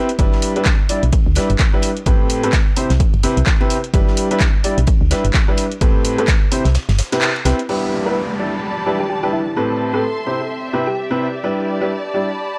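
A swung groove drives this uplifting, euphoric piano house clip, cut from a longer track, with a punchy electronic kick up front and a tape-warm analog drum machine adding crash, handclaps and hi-hat. A very quiet big-room rock kit sits far back with ride cymbal and a fat snare. A clear, woody upright piano plays the riff over a cycle of G6, Am9 and Cmaj7 chords, pumping against the kick alongside a solid, dark FM bass. The kick drops out at 6.8 seconds and the band hits an accent just before a second section opens at 7.7 seconds. There, a downlifter sweeps in and a distant, lush symphonic string section adds dark bowed texture, while from 8.1 seconds a tine-like FM synth pluck carries a gentle melody through chorus and analog delay. The whole mix has the dry, gritty character of a hardware recording on cassette tape in a small room.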